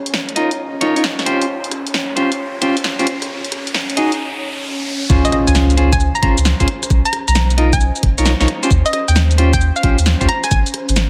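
An airy, breathy pad opens this soulful, bouncy two-step garage excerpt in Db major at 133 BPM, its soft chorused chords pumping gently in the background, while a punchy analog drum machine enters almost at once with hi-hat, rim click, shaker and snare, swung on the 16ths and re-recorded in a large room. A bright, clean electric guitar sits up front with picked stabs soaked in spring reverb and dub echo, as a riser builds in the background through the opening seconds. At 5.1 seconds the drop lands with an impact, bringing in a knocking, tape-warm layered kick and a deep, round dub sub bass. Moments later a hollow square-wave pluck carries the melody, detuned and ring-modulated with a quick, decaying attack, chorus and dub echo. Lush extended harmonies such as Dbmaj7#11, Cbmaj9#11 and Eb13 give the groove its soulful colour, all set in a light reverb.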